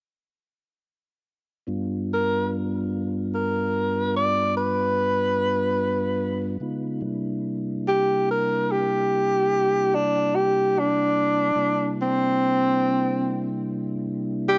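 Close and dry with a small-room ambience in a 1970s studio style, this soulful, swaggering slow blues excerpt in 12/8 at 48 BPM opens with a soft, flute-like tonewheel organ holding sustained chords through chorus vibrato, slow rotary speaker and key click from 1.7 seconds, moving from G7 to C7 at 6.6 seconds, while a breathy tenor saxophone enters at 2.1 seconds up front with a smooth-topped, vibrato-laden jazz solo melody.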